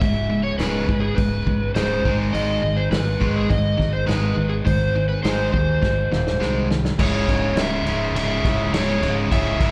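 Driving and brooding, this classic rock excerpt moves at 103 BPM in a straight 4/4, captured as a live club gig with light reverb heard through the venue's PA. An up-front overdriven slide guitar carries the melody with plate reverb and tape echo, over a biting guitar riff joined by a brighter cranked stack guitar in the background, a growling, punchy fingered bass and a vintage drum kit with dark cymbals and a rolled-off top. A drum fill from 5.8 seconds leads into a C#m section at 7.0 seconds, where a clear, very quiet grand piano joins the accompaniment.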